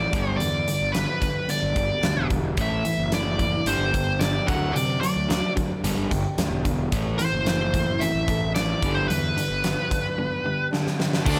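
A bright, up-front overdriven lead guitar with tape echo carries the melody from the start of this brooding, cathartic alternative rock excerpt at 110 BPM. Beneath it sit a dark, very quiet fingerpicked dreadnought acoustic with audible finger squeak, a picked semi-hollow guitar riff, and a growly, fuzzed electric bass, while a huge arena drum kit with a fat snare and punchy kick pumps in a big room. After a drum fill at 10.7 seconds, a thick, distorted fuzz guitar and a soft-attack, sul tasto string section slip into the background at 11.3 seconds, all under a light reverb.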